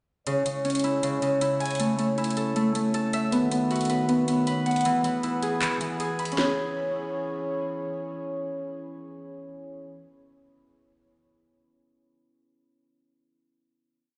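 A bright, ringing Celtic harp sits up front from 0.3 seconds, fingerpicking a patterned eighth-note arpeggio with digital delay that repeats like a sampled loop, while a mellow brass ensemble holds a sustained classical-style pad and an electronic trap kit adds a sharp snare, handclaps and metallic hats with fast rolls. This short, eerie, hard-hitting trap piece moves at 157 BPM with a half-time feel in C# minor, cycling through C#m, A, B and E. The drums drop out at 6.5 seconds, leaving harp and brass on a final C#m chord, all heard through a big sound system in a bare stone room with a dull top end.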